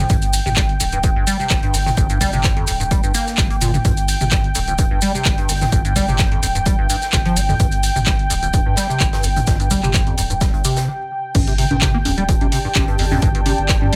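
Trippy and raw, this acid house excerpt runs at 128 BPM in 4/4 with a slight 16th-note swing, built on a squelchy, resonant square-wave acid bass riff treated with phaser, analog chorus and tape echo over a deep sine sub bass and a detuned sawtooth pad holding a sustained G5, both pumping with sidechain. A punchy analog kick leads the drums, joined by an analog drum machine playing congas, crash, handclaps, hi-hat and toms, a very quiet small-room acoustic kit on hi-hat and snare, and grainy, close maracas that stop at 10.9 seconds. After a brief break, the drop arrives at 11.3 seconds, and an ethereal, airy pad with ensemble chorus and a moving notch drifts in behind at 11.8 seconds, all under a light reverb.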